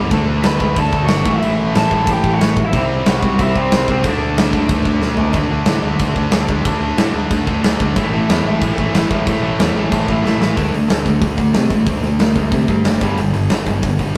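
A rowdy, rebellious punk rock clip at 184 BPM in D mixolydian opens with three distorted electric guitars riffing over a growling picked bass with punchy overdrive and a big, up-front acoustic rock kit with bright cymbals, while a raw garage guitar carries a melody from 0.4 to 5.0 seconds, one guitar drops out briefly before returning at 8.0 seconds, thick double-tracked fuzz fills out the riffs, and drum fills mark the section changes, all captured as a rough rehearsal-room recording with moderate stone room reverb.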